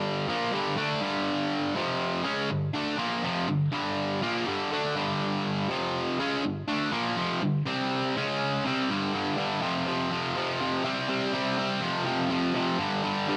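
An overdriven electric guitar plays alone from the start, its bright, picked power chords double-tracked and set up front in a powerful, energetic rock fragment with a straight 4/4 feel. The riff moves mostly between G5 and F5, with a brief C5 to C#5 turn before a new passage begins at 8.9 s and cycles through G5, F5 and C5. A light digital reverb adds a touch of space around the guitar.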